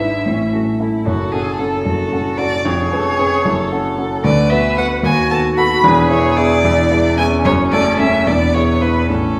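A rich, smooth violin carries the melody of this spirited classical-period movement for piano trio, its bowed line even and touched with vibrato as it sits up front. The dark grand piano, the loudest of the three, supplies a mellow, natural accompaniment with short sustain that reaches deep into the bass. Beneath the violin, a single warm cello plays an expressive second line, bowed with vibrato and portamento and heard from a distance. The lively movement moves at 75 BPM in dotted quarters in a straight 6/8, passing through chords such as A, F#m, C#7/E#, Bm/D, B7/D# and E before settling back on F#m and E. All three parts play throughout this 9.4-second cut from a longer piece, and the trio sounds heard from further back in a recital hall with a wet reverb of 1.4 seconds.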